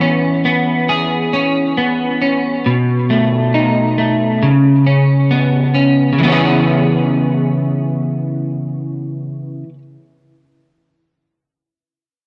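This dream pop fragment, cut from a longer piece, carries a melancholic, haunting mood in a straight 4/4. A single electric guitar, picked and sitting up front, plays arpeggios for the full 9.8 seconds, ranging from B2 to G#4. Its tone sits at the edge of break-up, warm and slightly broken-up, colored by analog chorus and tape echo. The harmony moves through E6, B7 and Bsus2/C#, then settles onto C#m7 as a new section begins at 6.2 s. A moderate scoring-stage reverb with a 2.1-second decay surrounds the dry, gritty hardware-recorded guitar, lending the spare arrangement a lingering, ghostly space.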